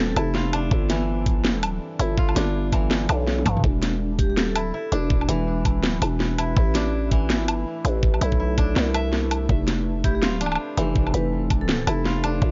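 A growling, buzzy 808-style bass sits up front in this heavy, cinematic half-time drum and bass excerpt at 164 BPM, joined by a layered kit with cracking snare, bright hats, toms, woodblock and a fill at 3.4 s, and from 0.7 s by a knocking electronic kick, while a woody, fingerpicked koto plays arpeggios through tape echo over a deep, moody, very quiet pad moving through F, G, E5 and Am, and a metallic, ringing vibraphone adds brief tape-echoed melodic phrases in the background, the whole mix carrying a dry, gritty hardware grain.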